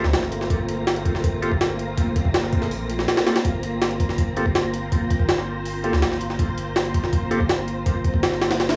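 Drum and bass with a jungle edge, this atmospheric yet frenetic fragment runs at 163 BPM in G minor, resting on a single Gm11 chord throughout its 8.8 seconds. Up front, a gritty, pitched-up sampler-style drum kit with a thumpy kick, high-tuned snare and hi-hat is overdriven and compressed, while a deep, thick sub bass carries tube saturation and a silky vintage string machine holds slow-blooming chords through ensemble chorus. Reedy organ stabs with key click, slow rotary speaker and dub echo stop at 7.4 seconds, and a breathy, wind-like tuned noise layer sits in the background, all captured in a dry, gritty hardware recording with vinyl crackle and a small room reverb.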